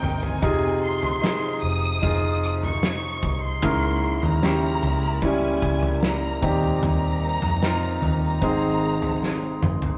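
A heartfelt pop ballad opens with an intimate concert grand piano, its action noise audible and deep bass ringing with long sustain, as a distant, lush violin section carries an expressive vibrato melody above a very quiet string section holding portamento chords, a dark, foam-muted electric bass and a loose drum kit with a fat snare and punchy kick, all in a rough rehearsal-room sound with wet reverb and a dull top, before a drum fill at 9.2 seconds.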